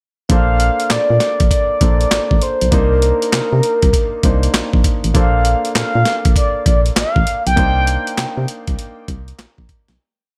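Upbeat and bouncy, this complete new jack swing R&B piece rides a hard-swung, gritty breakbeat with a thumpy kick and a snare layered with handclaps, over a punchy, dark FM bass line full of muted ghost notes and chromatic approach notes. A concert grand piano with audible action noise holds polished, long-sustained chords beneath Bbmaj9 and Cm9 harmony, while a mellow, horn-like sawtooth synth lead with chorus, vibrato and delay sings call phrases up front until 8.6 seconds. The dry mix begins fading out at 7.6 seconds and is gone by 10.0.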